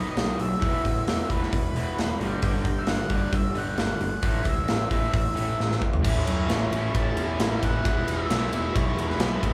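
A big acoustic rock drum kit anchors this driving, sunny classic rock excerpt, its punchy kick, medium-tuned snare, toms and bright cymbals sitting up front in a big-room sound, with a fill from 5.6 to 6.0 seconds marking the shift into a new section. Above it, an octave-fuzz lead guitar carries the melody from B4 to A5 with a dark, distorted, picked tone. Two picked, overdriven electric guitars play riffs in the background: one bright, the other lo-fi and garage-raw. A fuzz-laden picked electric bass, direct and amped, adds a punchy low end spanning E1 to F#2. At a straight 133 BPM in 4/4, the chords move from B to E, G and A, then settle on E at 7.8 seconds, all captured as a band playing live in one room with moderate large studio reverb.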